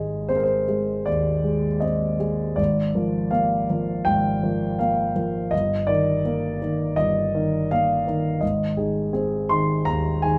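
An intimate grand piano, set up front with audible action noise, long sustain and light reverb, plays a hopeful, lyrical romantic character piece in 4/4 with flexible rubato, moving from Ab through Bb7/Ab and Eb/G back to Ab across a span from G1 to C6 in this brief fragment of a longer work.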